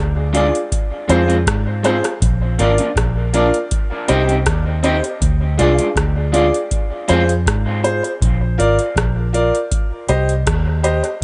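Dub reggae at 80 BPM in C minor, meditative and heavy, this short cut from a longer piece moves through a cycle of Ddim, Fm, Bb and Cm over a booming analog drum machine with a deep kick, metallic hats and rim clicks, sitting up front with a tape-warm, small-room character. A round, punchy, foam-muted fingered bass anchors the low end, while a clear, woody upright piano plays stabs with audible action noise and dub echo. A dark, slightly broken-up electric guitar adds accompaniment with subtle chorus and dub echo until 7.2 seconds, all set in light reverb and digital ambience.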